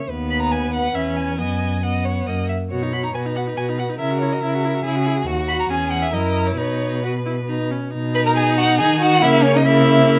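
A quick, graceful and spirited classical-period string quartet movement in triple time, heard as a short excerpt, where a rich, expressive first violin carries the melody with vibrato, portamento and soft attacks above a smooth, even second violin, while a clear, focused viola fills in the accompaniment and an up-front, dark cello anchors the bass with its own expressive portamento, all captured by close, detailed microphones in light reverb.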